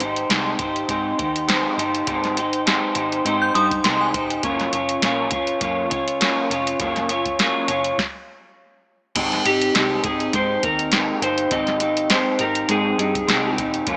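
Hazy, nostalgic bedroom pop opens with a twangy electric guitar through a small old amp, its analog chorus and warbly pitch drift sitting up front over a dark, round muted bass and a soft vintage rhythm box with a deep kick, tonal snare and metallic hats, all in a lightly swung groove. An inharmonic FM synth chime rings out briefly at 3.4 seconds, shimmering with ensemble chorus, tremolo and slapback echo, and the band pauses for a stop at 8.0 seconds as the chords move from Abmaj7 to Gbmaj7 and back. At 9.5 seconds a compressed, slightly broken-up slide guitar carries the melody through lush chorus and slapback echo, all heard through a small speaker sound with light reverb and digital ambience.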